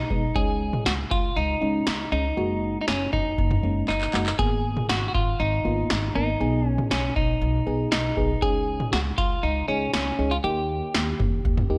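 A light reverb gives this nocturnal, driving synth-pop passage a touch of space, cut from a longer piece and moving in a straight 4/4. Up front, a clean, compressed semi-hollow electric guitar carries the melody with a picked, hollow-body tone, while a woody, thumpy upright bass with gut strings and pizzicato attack anchors the low end. An FM electric piano adds warbling, vintage accompaniment with a fast attack, a decaying mellow tail, a noise layer and a phaser. The dry, punchy electro analog drum machine sits prominently with a deep kick, snare, handclaps and toms under gated reverb, rolling into a drum fill at 3.9 seconds. The harmony moves through C#sus2, F#add9, G#madd9 and B6 before returning to C#sus2 and landing on D#.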